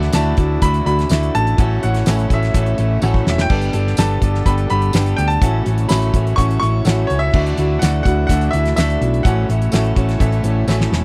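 This 11-second excerpt of folk rock and heartland rock opens with the full band at once, moving at 125 BPM in a straight 4/4 in A mixolydian, with an open-road, warm mood. A brilliant baby grand piano carries the melody with a present sound, its action noise audible in the intimate tone, while a very quiet, woody upright piano and a reedy, breathing harmonium with sustained chords fill in beneath. A picked swing-style acoustic guitar with fresh strings sits boxy in the background, and an electric guitar through a small old amp plays a slightly broken-up, lo-fi riff. The damped 70s drum kit, with its fat snare, tight kick and dark cymbals, sits up front beside a round hollow-body short-scale bass, and a jingly tambourine adds sparkle from the back. Drum fills mark 3.0 seconds and the close at 10.7 seconds, as the chords move between Dadd9, A6 and Gadd9 in a dry, close 1970s-style studio sound.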